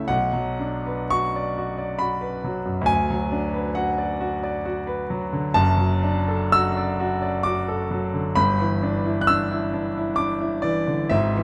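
A romantic classical nocturne for solo piano, this serene, dreamy fragment is cut from a longer piece and moves at 65 BPM in 3/4 with uneven beats and free rubato. A clear, intimate grand piano sits up front, its natural tone carrying audible action noise as it spans F#1 to F#6 over harmony that drifts from Bm through Bm/D and D/F# to Em7/G at 8.4 seconds. A moderate reverb, like a scoring stage, lends the sound a gentle halo.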